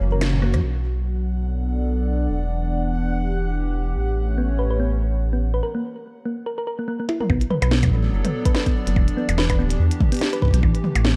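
This eerie, cerebral IDM excerpt opens on a hollow, flute-like pad holding sustained seventh chords with a slow, airy attack, chorus and sidechain pumping, over a rumbling, saturated saw bass whose detuned unison beats up front. A brief accent and fill from the glitchy drum kit and a flicker of the tine-like synth pluck pass in the first half second. From 1.3 s, a faint, bright bubbling texture with resonant, random filter steps drifts high in the background, and at 4.4 s the pluck returns with gentle, round arpeggios wrapped in chorus and digital delay. After a pause, the kit re-enters with a fill at 7.1 s, its tiny snare, clicky hats, rim clicks, toms and percussion blips carrying a lightly swung sixteenth feel and digital delay, as a deep electronic kick joins up front. The production is dark, with light reverb.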